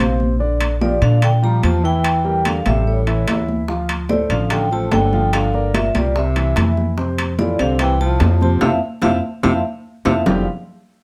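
A straight 4/4 groove at 146 BPM drives this sunny, sophisticated Afro-Cuban jazz excerpt in F major, with a woody, thumpy upright bass up front, soft-handed congas in the background, ringing metal-shell timbales from 0.6 seconds and very quiet low-tuned bongos joining at 3.7 seconds. A bright vibraphone with medium hard mallets and plate reverb carries the melody over a breathy, mellow tenor saxophone second line with scooped notes, while a concert grand piano with deep bass fills in the harmony through a move from Dm7 to Gm7, C7 and Fmaj7. The band hits an accent from 8.6 seconds, capped by a drum fill before settling on Fsus2, all captured with close, detailed microphones in a light room reverb.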